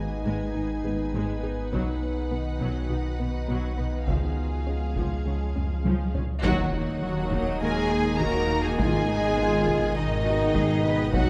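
A straight 4/4 pulse at 102 BPM drives this tense, futuristic stretch of hybrid orchestral and electronic film score, cut from a longer piece. A distant taiko ensemble on heavy sticks joins at 1.7 s and plays a drum fill into the shift at 6.4 s. Bowed strings carry the harmony from Abm through B and Db: a lush violin section sings the vibrato melody above a second violin line set back in the background, while violas add expressive portamento and cellos give a woody, soft-attack floor. A focused double bass section and a punchy sine sub bass with a pitch-drop attack anchor the low end, as a mellow, roomy French horn section holds sustained chords. Electronic colour comes from a pure, organ-like additive pad with ensemble chorus and its own reverb, plus a very quiet round pluck tracing arpeggios. At 6.4 s the band lands an accent on Ebm, a bright, close-miked trombone section enters very quietly with sustained chords, and a huge, dark impact sounds faintly before the harmony returns to Abm, inside a wet scoring-stage reverb.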